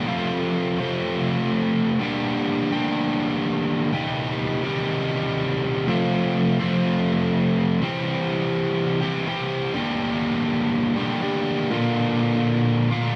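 Driving and brooding, this 13-second rock fragment at 124 BPM in straight 4/4 is carried entirely by a dark, overdriven electric guitar, picked and double-tracked, sitting up front and ranging from F2 to G4, tuned slightly sharp to A4 = 444 Hz. The chords move from F through Gm and Cm back to F, then shift at 7.8 s to a new passage of C, Gm and Bb. A moderate studio reverb gives the sound the feel of a band playing live in one room, and the clip is cut from a longer piece.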